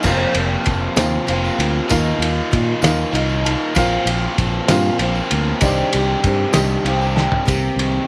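An overdriven electric guitar, bright, compressed and double-tracked, leads this short excerpt of folk rock and heartland rock with a picked riff up front. The music moves at 65 BPM in a straight 6/8 in C minor, tuned to A4 = 442 Hz. Its mood is reflective and dusty over chords that pass from Fsus4 through Ebsus2, Bbsus2 and Cmadd9 to Cm7. Beneath the guitar, a fingered electric bass sits direct and up front, while a cloth-damped drum kit gives a thuddy, muffled, lo-fi feel with a fat snare, tight kick, dark cymbals and gritty saturation. A picked steel-string acoustic guitar and a woody upright piano with short sustain stay in the background; the piano adds fills at 2.8 and 6.5 seconds, and the drums add a fill at 7.2 seconds. A jingly tambourine sounds distant, as if in a large room, and studio reverb surrounds the band.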